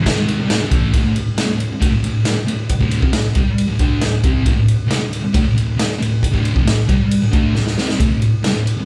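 A thick, dark fuzz guitar, double-tracked and up front, drives a picked riff from D2 to D4 across this swaggering, rowdy garage rock clip at 136 BPM in straight 4/4, cut from a longer piece. A raw, gritty acoustic drum kit with a boomy kick, medium-tuned snare and ride cymbal sits close and saturated with a rolled-off top, throwing in a fill at 7.6 seconds. The band sounds like it is playing live in one large studio room, with a moderate reverb tail.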